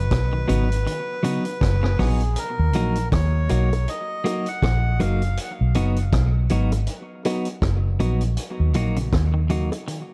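A swung dub reggae groove from a vintage drum kit of punchy kick, hi-hat and rim click sits under a round, foam-muted bass held up front, while a reedy, breathy melodica carries the melody with dub echo until 5.4 seconds, a clean electric guitar adds echoed accompaniment, a bright twangy guitar plays background arpeggios at the start and again from 8.8 seconds, and tight high-tuned bongos join at 3.1 seconds, inside a dark small-room ambience that gives this fragment of a longer piece a spacious, meditative mood.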